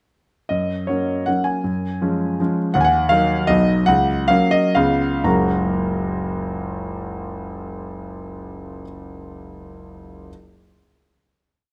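This is a short, complete romantic classical piece: a rustic, proud triple-time dance in 3/4 and F# major for solo concert grand piano, built on dotted rhythms. The tempo moves freely with rubato, ranging between 114 and 182 BPM, and slows from 2.2 s to 5.3 s. A single-line melody rides over bass notes and chords that stress the second or third beat, spanning from F#1 up to A#5. The harmony passes from F# through C#/F#, D#m, B and F#/C# to a C#7 before landing on a held F# chord at 5.3 s. The piano sounds clear and natural, with a deep bass, and sits up front thanks to close, detailed microphones, while a moderate recital hall reverb adds space around it.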